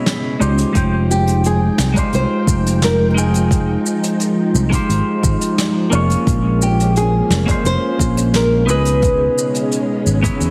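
The sound is heavily compressed and radio-like, set in a moderate recital-hall reverb with a hint of small-room ambience. This short cut from a longer sunset chillout piece sits in F minor at 87 BPM in a straight 4/4, with a relaxed, warm mood. A fingerpicked flamenco guitar carries the melody through a tape echo, while a bright, twangy clean electric guitar with delay and 12-bit sampler grit plays up front as accompaniment. A silky string machine with ensemble chorus holds mellow sustained chords in the background, and a growly fretless bass with tube saturation enters at 0.4 seconds to anchor the low end. Soft brushes on a dark, smooth kit add hi-hat, shaker, snare and woodblock, and a deep electronic kick joins at 0.8 seconds. The harmony moves through lush minor ninth chords, settling on Fm9 before shifting to Bbm9 and back to Dbm9.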